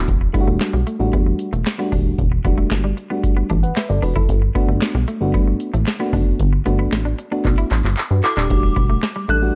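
Dark, lightly reverberant digital ambience frames this excerpt of early-eighties boogie funk, a funky, late-night groove at 114 BPM in E minor that moves from Em11 to Gmaj7 and back. Up front, a booming analog drum machine drives the straight 4/4 feel with a deep kick, tonal snare, metallic hi-hats, handclaps and crash cymbal, and it plays a fill from 7.4 to 8.5 seconds. Equally forward, a plucky analog bass blends sawtooth, square and sine tones into a punchy, filter-plucked line. A soft, round FM electric piano carries the chords with a chorus effect, while a clean, compressed semi-hollow guitar adds a bright riff further back in the mix. Crisp, human group handclaps sit in the background, and at 8.2 seconds an inharmonic synth chime enters with a ringing, ensemble-chorused melody high above the band.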